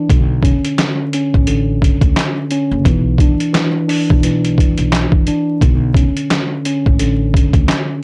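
A mellow tine electric piano opens at 0.0 seconds, its clean, direct chords sitting up front with a cassette-tape haze and filtering that trims both ends of its tone. This is a dark, gritty boom-bap hip-hop fragment in B minor at 87 BPM, set in 4/4 with a 58% swing on the sixteenths. From 0.1 seconds a sampler-style trip hop drum kit of kick, snare, hi-hat and handclaps arrives. It is compressed, pitched down, muffled and overdriven, with a thumpy kick and a medium-tuned snare. It sits up front as the loudest part, as if re-recorded in a small room. An acoustic upright bass enters alongside it, plucked pizzicato on gut strings, woody and warm with a touch of tube saturation, and it stops at 7.6 seconds. The harmony moves from Bm9 to E5/B and back to Bm9. The sound is a dry, gritty hardware recording with vinyl crackle and barely any reverb, cut from a longer piece.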